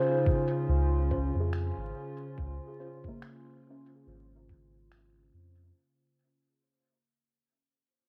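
A warbling, nostalgic tape-like pad of sustained chords and a woody, plucked kalimba with dub echo open this hazy, peaceful ambient dub excerpt, joined at 0.3 s by a muffled, thumpy kick and soon by a deep, round sub bass, with filter sweeps on both bass and kalimba, very quiet, mellow tine electric piano stabs from 1.1 s, and faint echoing finger snaps, all over vinyl crackle and a home cassette sound as the clip fades out.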